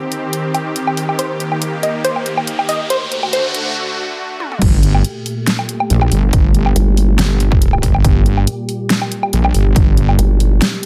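Heavy wobble dubstep at 140 BPM in a half-time, lightly swung 4/4 and G harmonic minor, this menacing excerpt builds over a lush, detuned supersaw pad with sidechain pumping, a riser, an overdriven drum kit with a huge snare, and a punchy, wave-folded unison pluck melody with delay, then drops at 4.6 seconds into a saturated, up-front sawtooth wobble bass with a tape-warm punchy electronic kick, punctuated by a nasal, resonant vowel-sweep wobble bass in a high-pass-filtered digital ambience.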